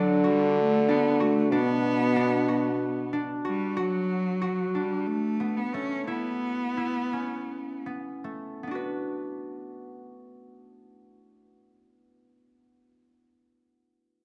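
Restless and pensive, this short excerpt of contemporary chamber music moves in an uneven 7/8 metre at roughly 152-187 BPM in eighths, with a straight feel in B minor. A clear, focused cello carries the melody up front, bowed by a single player with vibrato, while a French horn with a warm, classical-style tone sings a low second line that drops out at 3.4 seconds. Alongside them, a concert harp plays ringing, fingerpicked arpeggios that continue alone after the cello stops at 7.8 seconds, running to 11.9 seconds. The harmony moves from D to Bm7 and then to Esus4, and the tempo slows through the middle section from 3.8 to 8.6 seconds. A light reverb surrounds the up-front instruments.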